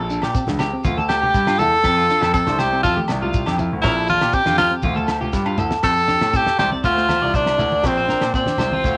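Joyful and danceable, this brief highlife guitar band fragment in F major moves at 120 BPM, with an edgy, forceful tenor saxophone entering up front at 1.1 seconds for a vibrato-laden, jazz-style solo with scooped notes, over slightly broken-up, compressed electric guitar arpeggios with lush chorus and tape echo, a dark, clean fingered second guitar in the background, deep, polished grand piano bass, a damped 70s drum kit with a fat snare and a fill at 5.3 seconds, low-tuned ringing congas, grainy shekere and very quiet agogo bells, all carrying the dulled top end of a cassette home recording in light reverb.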